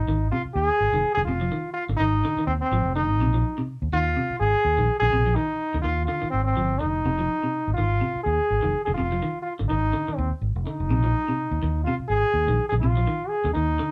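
A bright, roomy solo trombone carries the melody over a dark, round fingered electric bass and clean, picked arpeggios from a semi-hollow electric guitar in this funky, defiant afrobeat excerpt, with a swung sixteenth-note feel and chords alternating between Fm7 and Bb9sus4 as the band plays live together in a small room.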